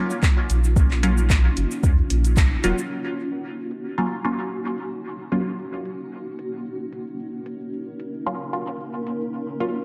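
Dub techno with a nocturnal, deep mood, built on a filtered dub chord stab that is muted yet bright through phaser and dub echo, a blurred, evolving granular cloud pad, a soft vintage rhythm box with metallic hats and cabasa, and an overdriven electronic kick and round soft sub bass that drop out at about 2.5 s and 2.7 s, just after a band accent at 2.4 s, with a brief flicker of warbling lo-fi synth keys in the background around 2.6 s, all set in a dark production with lush hall reverb.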